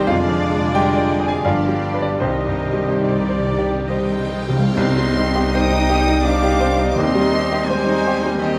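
A wet recital-hall reverb wraps this brief, tragic cut from a romantic movement for piano and orchestra in C minor, moving in a rubato 3/4 that drifts between 65 and 92 BPM. A clear, present piano sits up front carrying the melody, joined by a lush, vibrato-rich violin section with a smooth, focused top, while a distant second violin section, an airy flute and a very quiet, mellow clarinet weave second lines behind them. Violas and a shadowy bassoon fill out the accompaniment, cellos and a focused double bass section anchor the bass, and distant, roomy French horns and tight trombones hold dark sustained chords until 7.2 seconds. The harmony moves from a diminished chord through G7 into C minor, and bright cymbal swells with tam-tam hover in the background. Timpani played with medium mallets on calf heads enter at 2.2 seconds with a fill, and the full ensemble strikes an accent at 4.8 seconds as the brooding second section begins.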